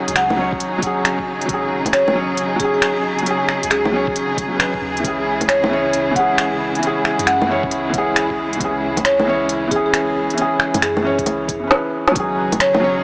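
Up-front overdriven electronic drums with a woody snare, smooth hats, bongos and finger snaps drive this wistful, melancholic future garage excerpt in swung 4/4, joined by a muffled, thumpy pitched-down kick, while a soft, muted felt piano with audible action noise and dub echo, rich bowed chamber strings and a round, dark 808-style bass in the background all pump to the sidechain, and a warm marimba melody with its own dub echo floats above, everything beneath a huge ambient reverb, vinyl crackle and a small-speaker tone, with a drum fill at 11.7 seconds.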